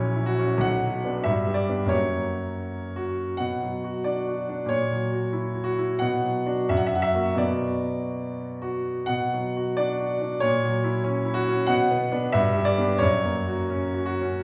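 A wet recital-hall reverb with a 1.6-second decay surrounds this short passage, recorded in a church or concert hall, and the piano sits up front within that resonant space. It is a romantic character piece for solo piano in B minor, passionate and bittersweet, cut from a longer work and tuned to A4 = 441 Hz. The concert grand plays throughout, from 0.0 to 14.4 seconds, with a brilliant, open tone, deep bass and long sustain across a range from A#1 to F#5. The music moves in 2/4 with a rubato feel, the tempo ranging between 62 and 98 BPM. Its harmony circles around B minor, leaning on an F#7 chord over A# and passing through G and F#. The opening phrase returns at 9.1 seconds, bringing the same bittersweet progression back.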